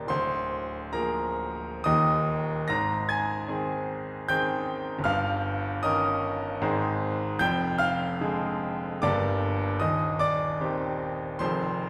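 A bright grand piano opens this excerpt of a romantic character piece alone, sitting up front with an intimate presence, long sustain and the audible noise of its action. In Eb major and 3/4, the passionate, warm playing moves with free rubato between roughly 62 and 81 BPM, ranging from deep D1 to Bb6. Harmonies pass from Bb7/D through Eb, Ab and Ddim/F to settle on Cm/Eb near 9.8 seconds, all bathed in the generous reverb of a church or concert hall.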